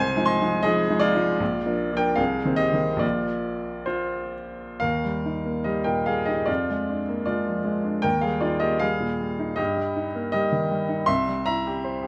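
Flowing in a rubato two-beat metre, this brief romantic character piece for solo piano unfolds with a lyrical, warm mood across its 12.1 seconds, cut from a longer work. The baby grand sits up front with a clear, intimate tone, long natural sustain and audible action noise, spanning from deep bass to the upper treble. Close, detailed miking is set in a moderate recital hall ambience, and around 4.8 seconds the opening passage gives way to a new section that settles onto the home chord before ending on a dominant-seventh colour.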